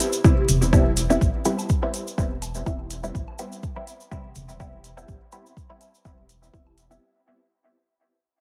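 Dub techno at 124 BPM in A minor, deep and nocturnal, this short cut from a longer piece holds on a rootless Am9 as a muted, detuned chord stab with a filter pluck sits up front, pumping with phaser and dub echo over a deep, up-front electronic kick that enters at 0.2 seconds, smooth layered hi-hats, and a grainy, saturated cabasa. A soft, round sub bass joins at 0.5 seconds with tube saturation and sidechain pumping, while electronic toms and woodblock, re-recorded in a large room, echo in the background. The whole passage fades out through moderate spring reverb, a heavily compressed radio-like sound and vinyl crackle.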